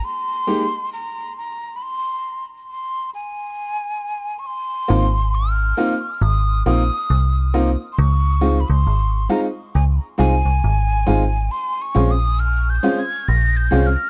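A breathy jazz flute with vibrato, a soft attack and tape echo opens this smooth, bittersweet lovers rock reggae excerpt at 68 BPM, joined at 0.5 seconds by a clear, intimate baby grand piano whose action noise is audible, before a stop drops the chords out until 4.4 seconds. Just after that, a metallic, digital FM bass with a fast, decaying attack comes in up front beneath a 16th-note swing as the harmony moves through Ab6, Dbmaj7 and Bbm9. The excerpt has a dry, close 1970s-style studio sound with studio reverb.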